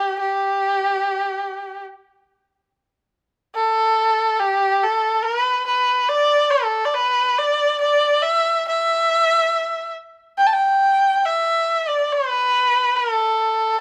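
Pastoral and festive, this short excerpt of Chinese traditional music in the G gong mode features a single erhu played solo at a rubato 70 BPM in 4/4, its rich, nasal, biting bowed tone carrying light vibrato and portamento between G4 and A5, heard up front and close with little reverb.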